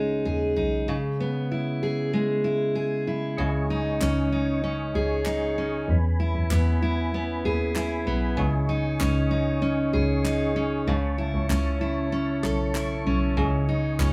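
A tender, reflective acoustic pop excerpt in a straight 4/4, cut from a longer piece and played live by a band in one room with moderate studio reverb. A dark, full-bodied fingerpicked steel-string dreadnought guitar sits up front from the start, joined by a clear, focused double bass bowed by a single player with vibrato. At 3.4 seconds a soft, flute-like tonewheel organ enters with sustained chords, its second-harmonic percussion and chorus vibrato turning through a slow rotary speaker further back in the mix. Crisp, close and dry group handclaps follow at 4.0 seconds, adding a human touch. The harmony returns again and again to C#sus2, moving through C#m7, E and A/C# along the way.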